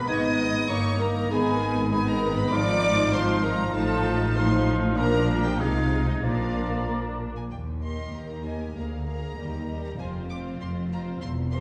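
A chamber violin section carries the melody in this stormy, restless classical-period orchestral passage in 2/4, its sul tasto tone soft and intimate with light vibrato. A second violin section, a pure, mellow flute group, a bright oboe and a very quiet clarinet weave second lines around it, while rich violas and a roomy bassoon supply accompaniment, a dark French horn section holds sustained chords in the background, and lush cellos join expressive double basses with portamento on the bass. The winds and horns stop at 7.2 s, leaving the strings to carry the fragment to 11.6 s, heard from further back in a reverberant scoring-stage room.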